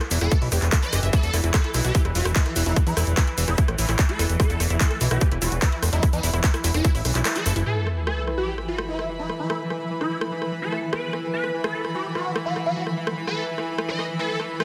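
A fat, saturated analog bass sits up front in this driving, intense psychedelic trance excerpt at 147 BPM in 4/4, its detuned sawtooth and square tone thick and nasal as it holds E1 to E2 until 7.6 seconds. An overdriven electronic kick punches tight beside it, while a layered drum and bass kit adds bright hi-hats, handclaps and rim clicks, and a grainy tube shaker sits in the background. A swarming, aggressive rave lead with a pitch-rise attack, portamento, phaser and tape echo carries the melody between E4 and D#5, joined by a lush, warbling unison pluck riff with a filter sweep and digital delay, over a pulsing gated triangle texture colored by chorus. The kick drops out at 7.3 seconds on a band accent, and at 7.7 seconds a sub drop impact lands as a rich, earthy chamber string section enters with light vibrato. The lead, strings and gated texture carry on to the end alongside the drum kit, the three of them pumping against the sidechain in a dense, heavily limited mix with light digital ambience.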